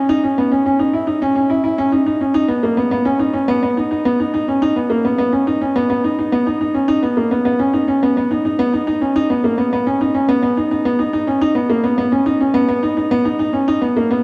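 An upright piano opens this fragment of a longer electronica piece and plays alone for the full 14.2 seconds. Its tone is woody and boxy, with short sustain, and it sits up front in the mix, moving within a narrow span from A#3 to E4. The tempo is a steady 106 BPM in a straight 4/4, and the instrument is tuned slightly low, to A4 = 435 Hz. A wet concert hall reverb with a 1.8-second decay surrounds the piano, and the overall production is dark and warm. The mood is hypnotic and intimate, like a close, private moment in a large, resonant space.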